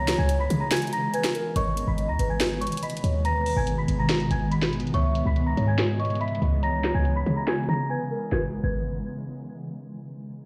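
Up front, a punchy, tight 808-style bass drives this menacing, eerie trap excerpt at 142 BPM in a half-time feel, moving in G# minor between C#m and G#m chords. A trap drum kit with a sharp snare, metallic hi-hats and crash cymbal sits close alongside it, with the kick muted from 0.7 to 1.6 seconds, a filter sweep running from 1.6 to 8.3 seconds and a short break at 7.9 seconds. Above, a delicate, bell-like celesta carries the melody through a low-pass filter and delay, while a hollow, woody clarinet-like synth lead adds a dark second line with chorus, vibrato and delay. Beneath them, a cloudy, detuned granular pad holds blurred sustained chords in its own reverb. The whole piece sounds as if played on a big sound system in a bare stone room, giving it a cavernous air before the excerpt ends.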